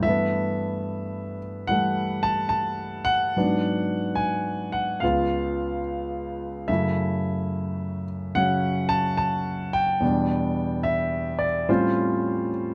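A solo concert grand piano opens this relaxed, swung jazz excerpt, polished, intimate and up front, with deep bass, long sustain and audible action noise, as it moves from G69 through G#m7b5, C#7, F#m7 and Em7 to A7alt under light reverb in a dark production.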